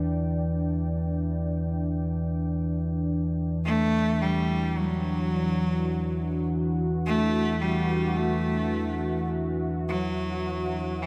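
In free time, this desolate, cavernous dark ambient drone sets an ominous, rumbling low drone under a moody, detuned pad with chorus, moving from Em7 to Dadd9/E, and a nasal, boxy bowed cello with light vibrato and analog delay joins them at 3.6 s, all in a dreamy plate-reverb mix that fades out from 8.5 s, cut from a longer piece.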